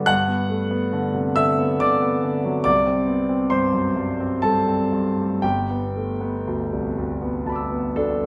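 A clear, up-front concert grand piano opens this luminous, serene fragment of impressionist classical solo piano in G major, moving in a rubato 3/4 at roughly 58-72 BPM through Bm7/G, C5 and G69 chords across a range from deep bass to high treble, its natural tone and long sustain ringing into a wet recital hall reverb.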